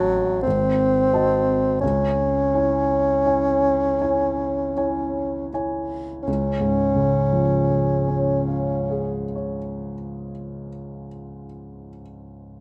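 Close, detailed microphones and a light reverb give this romantic classical duo an intimate, up-front sound, cut from a longer piece. The mood is yearning and elegiac, moving in a slow, rubato 3/4 at roughly 38-45 BPM and slowing down through its opening passage. A mellow bassoon carries the melody with vibrato in a close-miked classical style, while a dark baby grand piano accompanies with long sustain beneath it. The harmony moves from G#7b9 to C#m, and a second passage begins at 6.3 seconds on a C# chord. The bassoon stops at 9.2 seconds, leaving the piano to continue on its own to the end.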